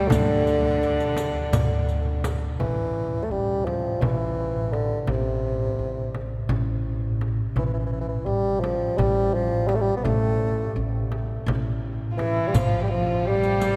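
A melancholic, hypnotic Turkish makam ensemble in nihavent on A opens with a warm bassoon carrying the melody up front with light vibrato, joined briefly on second lines by a dark, airy-bowed kamancheh with soft attack and portamento and a bright, nasal cello set in the background. Beneath them a woody pizzicato upright bass holds the low end, a small frame drum sits in the background throughout, and a clay-shelled darbuka and a riq with dark jingles add close, dry percussion. At 169 BPM counted in eighths in 7/8 with a straight feel, the bassoon carries on over the bass and frame drum through the long middle stretch. Around 12.1 s the kamancheh returns with the cello just after, the darbuka and riq rejoin at 12.5 s, and moments later an earthy, distant bowed double bass enters with a very quiet drone on A. The ensemble rings out in a cathedral reverb with a long six-second decay, and the passage is cut from a longer piece.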